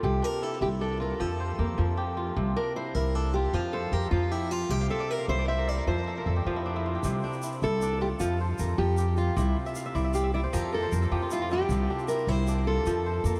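Hypnotic and joyful, this West African traditional piece for strings moves in a straight 12/8 at 103 BPM in C mixolydian, rocking between C and F chords, with an Fmaj13 colouring the later bars. A fingerpicked steel-string acoustic guitar carries the melody up front, its fresh strings and audible finger squeak touched with delay, and it takes a solo from 7.0 seconds to the close. Alongside it the kora spins ringing, crisp arpeggios across its range and adds fills of its own, while a woody, dark pizzicato upright bass anchors the low end near the front. A grainy, mellow tube shaker joins at 7.0 seconds, sitting further back in the mix. The whole is soaked in a huge ambient reverb with a dreamy haze and a veil of vinyl crackle, and the passage is cut from a longer piece.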